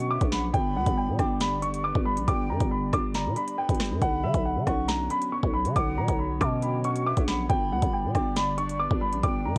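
Drill hip hop at 138 BPM in a half-time feel, menacing and dark, where a boxy, intimate concert grand piano carries the melody through a low-pass filter and cassette tape grit over a growling, saturated 808-style bass and knocking, crisp drill drums, while a mellow clean electric guitar accompanies and a warbling detuned pad with chorus and a breathy, hollow jazz flute with tape echo sit in the background over Bmadd9 and G chords in this short cut from a longer piece recorded at home on cassette.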